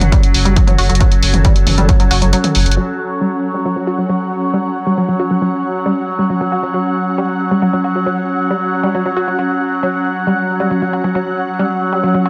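A straight pulse drives this dark, hypnotic peak-time techno cut, as a punchy layered electronic kick and a saturated, thick sub bass pump beneath dry analog drum-machine hi-hats and toms, a resonant, detuned drone with moving overtones sitting up front, a warbling, ethereal pad, and a round, overdriven analog pluck riff carrying chorus and digital delay, all in a stone-room ambience, until the kick stops at 2.0 seconds, the sub bass drops away at 2.8 seconds, and a filter sweep takes hold of the pluck for the rest of the excerpt.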